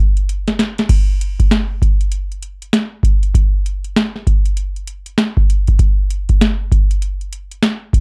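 Hip hop at 98 BPM in 4/4 with a swung sixteenth-note feel, this nocturnal, smoky cut from a longer piece features only a booming, overdriven analog drum machine with a deep kick, crisp snare, metallic hi-hats and crash cymbal, sitting up front in a dry, close 1970s-style studio sound, re-recorded in a small room, opening with a drum fill from 0.3 to 0.9 seconds before settling into the main groove.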